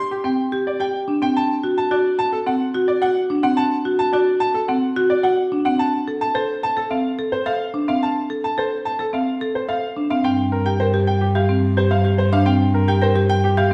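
A straight 4/4 pulse at 108 BPM drives this urgent, hypnotic fragment of minimalist classical pattern music, cut from a longer piece. A brilliant baby grand piano carries the melody between G4 and C6 with short sustain, while a woody marimba struck with hard mallets spins percussive arpeggios from 0.2 seconds onward. At 10.2 seconds a single bowed cello enters on a low, even G2 with light vibrato, all set in a stone room reverb within a dark production.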